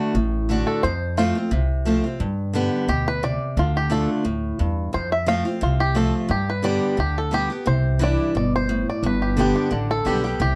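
A brisk 4/4 pulse at 176 BPM with a light swing on the eighths drives this lively, joyful bluegrass fragment. A picked parlour guitar with old strings sets up the accompaniment from 0.0 seconds with a boxy tone. A thumpy, woody upright bass on gut strings follows at 0.1 seconds, played pizzicato. At 0.7 seconds the five-string banjo takes the melody and carries a twangy, percussive solo with fingerpicks through the rest of the clip. The chords cycle through D, F, G and D minor before landing on Cadd9 and G. All three instruments sit up front in a small room with moderate reverb, and the production is dark and warm.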